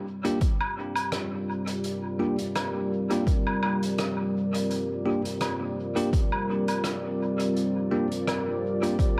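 Ambient dub at 84 BPM in G minor, meditative and hazy, built on a deep, moody pad of detuned sawtooth and sine layers with a sub octave, holding a Gm7 chord up front through chorus and its own reverb. Bell-like, bright tine electric piano stabs sound from 0.2 seconds, thrown into dub echo, as a distant, roomy soft-mallet kit plays hi-hat, rim click and woodblock with echo of its own. A punchy, overdriven electronic kick enters at 0.4 seconds and sits loudest in the mix, all of it bathed in spring reverb across this short cut from a longer piece.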